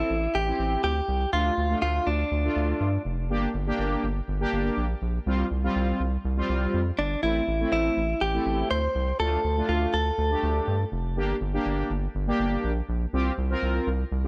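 Synth-pop excerpt in D minor at 122 BPM, nocturnal and driving, with a direct-recorded clean electric guitar carrying a picked, tape-echoed melody from 0.0 to 3.0 and 7.0 to 10.9 seconds over fat, detuned analog synth brass with chorus and a deep, round analog bass, all set in light digital ambience as the chords cycle from Am7 through Dm and Gm to Csus4.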